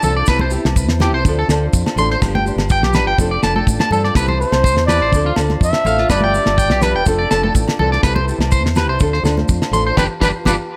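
A twangy, slightly broken-up electric guitar sits up front with bright picked arpeggios through analog delay, driving this sunny, danceable highlife guitar band excerpt at 124 BPM in C major, over a Cmaj7–Dm7–G7–F6 cycle. Fingerpicked nylon-string guitar, a clean tonewheel organ with slow rotary speaker, chorus vibrato and key click, and a round, punchy fingered bass fill out the harmony, supported from the start by soft-handed congas and grainy, distant maracas, while a dry 70s drum kit with fat snare and tight kick enters at 0.3 seconds alongside ringing agogo bells. A breathy, whispered trumpet takes an intimate jazz-style solo from 4.4 seconds, and the band hits an accent from 10.0 seconds in a small room with light reverb.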